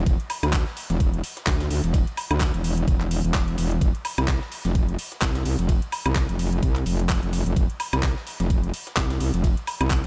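A metallic wobble bass leads this bass house excerpt, sitting up front with an aggressive, FM-sine tone that is saturated through tube warmth, compressed, thickened with chorus and pumped by sidechain against the beat, holding low between E1 and D2. The mood is bouncy and swaggering at 128 BPM in 4/4, with a 57% swing on the sixteenths and tuning set to A4 = 441 Hz. An electronic kick drum, knocking and tape-warm, enters with the other drums at 0.1 seconds and sits prominently in the mix with a touch of studio reverb. A layered garage kit adds handclaps, metallic hi-hats and woodblock. Further back, a gritty, pitched-up breakbeat sampler kit supplies a high-tuned snare, hi-hat and ride cymbal, all thinned by high-pass filtering and set in studio reverb. The overall room sound is fairly dry, and the clip holds a single section for its full 10.1 seconds.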